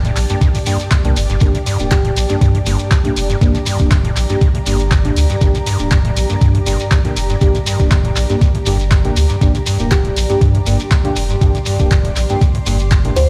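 A squelchy, distorted acid bass riff in G minor opens this raw, gritty acid house excerpt at 120 BPM with a light swing. It rides over a thick, saturated sub bass that pumps against the beat, a dry overdriven analog drum machine with handclaps and hi-hat, a grainy shekere and a cloudy, evolving granular pad shimmering high above. Dark, soft chord stabs treated with chorus, phaser and delay enter at 0.3 seconds, followed by an up-front, thumpy overdriven kick at 0.4 seconds. A woody, ringing kalimba melody drifts in the background, briefly at 1.9 seconds and again from 9.9 seconds. The whole mix sounds as if played through a big sound system in a bare stone room.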